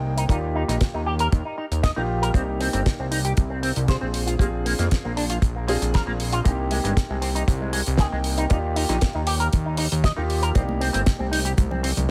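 A fat, detuned sawtooth bass with a saturated filter pluck and a smooth vintage grand piano open this groovy, cosmic nu-disco excerpt at 117 BPM. Both pump against the sidechain, and the piano is low-pass filtered and trailed by digital delay over Ebmaj9, Cm9, Bb7 and Abmaj9 chords. At 0.2 seconds a bright, twangy, envelope-filtered guitar riff with lush chorus and delay arrives alongside a damped 70s kit with a fat snare and hi-hat, while a dry, dark, tight kick sits up front in studio reverb, and thick-skinned, high-tuned congas join in the background at 10.7 seconds.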